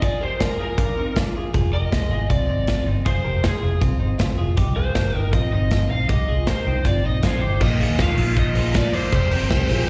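The lead guitar, pushed through a small cranked amp, carries the melody with an overdriven, picked tone, thickened by slapback and tape echo. This short cut from a longer piece of jangly indie pop in F dorian moves at a straight 158 BPM in 4/4, wistful and bittersweet in mood. Beneath the lead, a bright, twangy twelve-string electric guitar spins compressed, clean arpeggios, while an up-front studio drum kit with a punchy kick, a medium-tuned snare and a rolled-off top drives the beat with hi-hat and crash. A dark, round, foam-muted fingered bass joins at 1.5 seconds as the chords move from Bb7 to Fm7 and Cm7. At 7.6 seconds a crunchy overdriven guitar enters with phaser and slapback echo, and the harmony shifts to Bbsus4 before settling on Fmadd9. The whole thing sounds like a live gig heard through the venue's PA, with recital-hall reverb and a layer of vinyl crackle.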